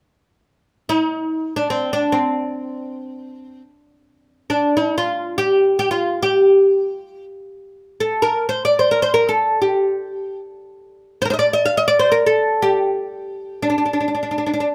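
Persian music in free time, hypnotic and melancholic, taken from a longer piece. A solo oud carries the melody from 0.9 seconds to the end at 14.7 seconds, ranging from C4 to F5. Its acoustic tone is bright, woody and deep, plucked with a plectrum on fretless double strings. The instrument sits up front in the mix. A moderate studio reverb lends the recording a modest sense of space around the lone oud.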